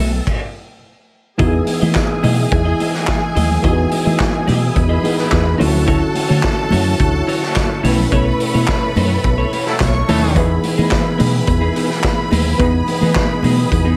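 A joyful, glamorous disco passage at 107 BPM in E major opens on a B7sus4 chord with twangy, compressed clean electric guitar under a lush chorus, a smooth tonewheel organ on a slow rotary speaker, and a round, tube-saturated fingered bass, joined by a gritty vintage drum kit with punchy kick, handclaps and dark cymbals. At 1.4 seconds the harmony lands on Emaj7 as focused, distant symphonic strings carry a second line, a worn, slightly out-of-tune tine electric piano adds lightly overdriven accompaniment, and thin-skinned congas sit in the background. During a band accent, clear vintage horn stabs with octave doubling arrive at 9.7 seconds before the chords return to Emaj7, set in a small room with light reverb.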